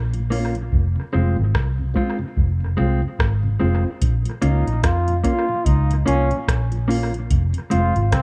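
Roots reggae in B-flat minor at 73 BPM, this short cut from a longer piece moves with a swung sixteenth feel and a hypnotic, serious mood, shifting between B-flat minor and F minor. A dark, round, foam-muted electric bass sits up front, joined by a soft vintage rhythm box whose deep kick, metallic hi-hats and rim click carry analog delay and the character of a small room, with the hats dropping out from 0.7 to 4.0 seconds. A dark, clean, compressed electric guitar adds accompaniment through tape echo, while a mellow, flute-like tonewheel organ with key click, chorus vibrato and a slow rotary speaker stays in the background. At 4.4 seconds a clear, punchy trombone enters as a second line in a classical style, also treated with tape echo. The mix is dry in terms of reverb but heavy with echo.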